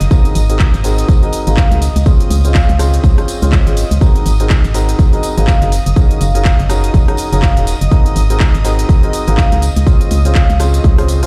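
Piano house at 123 BPM in Ab mixolydian, this uplifting, joyful excerpt swings its sixteenths and cycles through Ab9, Dbmaj7 and Gb69 chords. A punchy, up-front electronic kick drives the groove alongside a layered house kit of crisp hats, handclaps, cabasa and rim click, while a compressed, saturated tambourine sits in the background. An organ-like FM bass, hollow and dark with a fast, decaying attack, pumps against the kick from the start, and a silky, detuned analog string pad with ensemble chorus and vibrato holds sustained chords behind it, also pumping. A bright, brilliant concert grand piano plays the riff from 0.1 seconds, run through a low-pass filter and delay with sidechain pumping. A ringing, metallic vibraphone with medium mallets adds a smooth, background melody with delay between 1.2 and 10.4 seconds. The mix sounds like it is played on a big sound system in a bare room, with stone room reverb around it.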